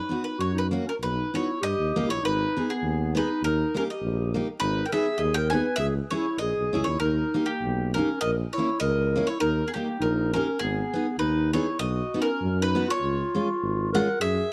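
Dry and close, with a light touch of studio reverb, this 1970s-style recording catches a festive, bouncy alpine folk dance band at 100 BPM in 2/4, gently swung and a little rubato, in G# harmonic minor. A double-strung bowl-back mandolin carries the melody while a mellow, classical-style clarinet plays a second line, and an up-front, full-bodied jumbo steel-string guitar picks the accompaniment over a smooth-topped tuba bass that enters at 0.4 seconds. The harmony moves through G#m, C#m and an A#dim before the opening section returns at 11.8 seconds in this cut from a longer piece.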